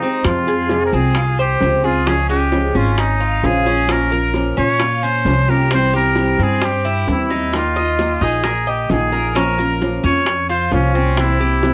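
A nasal, straight-muted trumpet opens this danceable Cuban son and guajira excerpt up front with vibrato and scooped jazz-style notes, alongside a dark, fingerpicked nylon-string guitar with old strings and a metallic, double-strung tres picking arpeggios through plate reverb and analog delay. From 0.2 seconds a thumpy, woody pizzicato upright bass with tube saturation sits up front, while round, low-tuned bongos played with soft hands stay in the background and grainy, mellow maracas join close by at 0.3 seconds. The chords move from Fm through Db, Bbm, C and Ebsus2 to C7, and the home cassette recording in a small room gives the guitar, tres and trumpet a tape-worn character.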